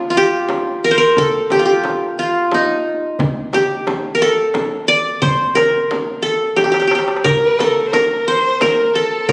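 Longing and soulful, this excerpt of an Arabic maqam ensemble moves at 89 BPM in 3/4. A bright, up-front qanun played with fingerpicks on its triple strings carries the melody from the start. A crisp, small metal-shell darbuka played with soft hands and a deep, large frame drum played with hard hands join close and dry at 0.5 seconds, with a drum fill at 6.6 seconds. A single bowed violin with vibrato and portamento enters at 7.3 seconds for an expressive second line, and the ensemble is heard in a moderate recital-hall reverb captured on a phone in the room.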